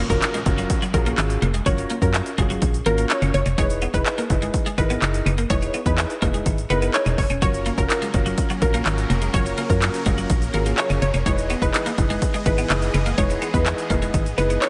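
A punchy house drum kit of handclaps, hi-hat and kick drives this upbeat, euphoric dance-pop cut at 125 BPM in F# major, with a hollow, organ-like FM bass pumping up front, a twangy twelve-string electric guitar riff with ensemble chorus, a lush detuned unison pluck melody through tape echo, a deep-toned concert grand piano accompaniment with slapback echo, and a grainy tube shaker in the background, while a distant downlifter sounds until 3.6 seconds and huge, airy supersaw chords with phaser join at 7.4 seconds over the shifting F#maj7 and Emaj7 harmony in a lightly reverberant digital space.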